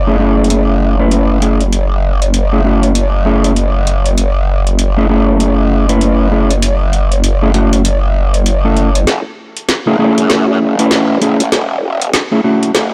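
A growling, saturated bass anchors this funky, gritty glitch hop fragment, its detuned tone shaped by a formant filter, chorus and a high-pass filter so it wobbles up front with a fast attack and compressed sustain from 0.0 seconds. The groove sits at 98 BPM in 4/4 with a 61% swing on the sixteenths, resting on an F#m7 chord in F# minor, tuned to A4 = 444 Hz. A mellow, clean electric guitar plays fingered stabs between A3 and B4, its dark color softened by a low-pass filter and trailed by dub echo. Layered electronic drums, re-recorded in a small room and placed up front in the mix, arrive at 0.4 seconds, pairing a woody snare with metallic hi-hats. At 9.1 seconds the music moves into a build-up carried by a drum fill that runs to the end of the cut. Light reverb and a dark, warm production frame the whole piece.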